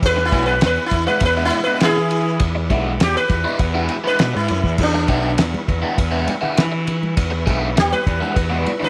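Soaked in moderate spring reverb and studio ambience, this trippy, kaleidoscopic psychedelic rock excerpt at 101 BPM in E mixolydian over an E7 chord is led by an up-front sitar solo, buzzing and shimmering with sympathetic strings and slapback echo, over a double-tracked overdriven electric guitar riff through a phaser, a round, fuzzy picked bass, a cloth-damped thuddy drum kit with dark cymbals and a fat snare, a very quiet tonewheel organ holding sustained chords with key click and rotary speaker, and bright, damped congas entering in the background at 5.5 s.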